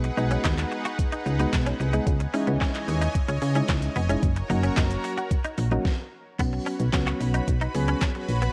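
A straight 4/4 dance-pop groove at 111 BPM drives this euphoric, carefree excerpt in B major, led by an electronic, layered pop drum kit with a knocking kick, a deep snare, hi-hat, shaker, handclaps and a crash, all overdriven and sitting up front. A punchy, round FM bass with a fast attack, also up front, pumps under sidechain compression, as does a lush, detuned supersaw pad holding slow-blooming sustained chords through B6, C#madd9 and F#. Soft, electric-piano-like synth keys add gentle, dark, vintage-toned accompaniment with a chorus sheen, while a bright, twangy clean electric guitar, recorded direct and picked, plays a compressed riff through an ensemble chorus. A crisp human group handclap enters at 2.6 seconds, barely audible in the background. After a brief stop at 5.9 seconds, the music moves into a new section on Bsus2 at 6.4 seconds, and the whole recording carries light digital reverb and the warbling pitch drift of worn cassette tape.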